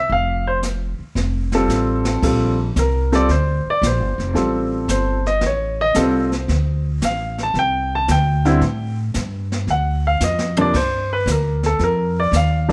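A polished baby grand piano carries the melody over a woody, thumpy pizzicato upright bass from the first moment. Brushed drums with dark cymbals and a boomy kick join at 0.1 seconds and play fills at 1.2 and 10.2 seconds in this playful, relaxed swinging jazz piano trio fragment in Bb major at 113 BPM, set in light reverb.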